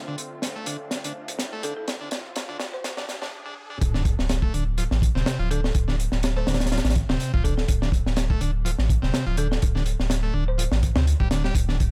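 Dry and close with a high-passed edge, this funky, energetic breakbeat cut runs at 124 BPM in D minor with a light swing on the sixteenths. A crunchy, gritty drum kit with a punchy kick and high-tuned snare sits up front beside a thick, saturated sub bass. A buzzy vintage combo organ riff carries tube saturation, sampler grit, dub echo and a filter sweep through the build-up, while a swirling, detuned sawtooth pad with phaser, chorus and sidechain pumping holds Dm7 until 3.3 seconds. A woody, telephone-filtered marimba melody with dub echo hovers in the background, and a very quiet electronic riser and swell lead into the drop at 3.8 seconds, where a sub drop hits and the harmony moves to D5.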